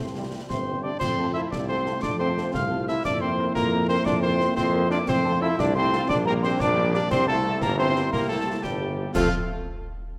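A proud, festive military-style march for wind band in 6/8 at 118 BPM in F major, cut from a longer piece, where a dark, close-miked solo cornet carries the melody over a clear, soft-attacked euphonium and an airy piccolo with rolled-off highs on second lines, punchy trombone chords in the background, a distant, roomy tuba bass, a very quiet French horn section entering at 0.2 s, and concert snare, bass drum and bright clash cymbals, close and dry, joining at 0.5 s, all in a wet scoring-stage reverb.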